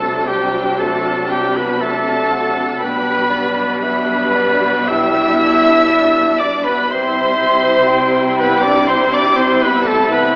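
A rubato 4/4 at 60 BPM carries this serene classical passage in C major, cut from a longer piece, where a rich, expressive violin section sings the melody over second lines from a clear, close oboe, a pure, very quiet flute section, a mellow solo clarinet and a smooth, even second violin section, while a lush viola section with portamento accompanies, a horn section holds sustained chords, and a soft-attack cello section and a focused double bass section anchor the bass through D7/C, G/B and C, all heard through a concert hall reverb and an AM radio sound.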